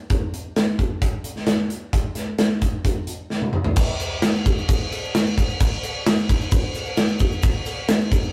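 A rough rehearsal-room recording with light reverb captures this driving, sunny rock excerpt at 131 BPM in a straight 4/4. A big acoustic rock drum kit sits up front, its bright cymbals, medium-tuned snare, punchy kick, hi-hat, crash and toms carrying the groove until a drum fill at 3.3 seconds leads into the next section. From 3.8 seconds a very quiet tube shaker joins with a grainy, saturated, compressed texture.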